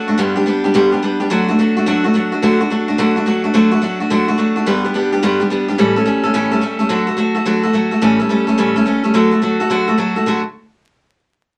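Vinyl crackle and a wet small-room ambience frame this retro, upbeat rock excerpt at 214 BPM in swung 4/4, where a bright, up-front picked steel-string acoustic guitar plays solo in D major from 0.0 to 10.4 seconds, moving through G, D, A7 and back to D.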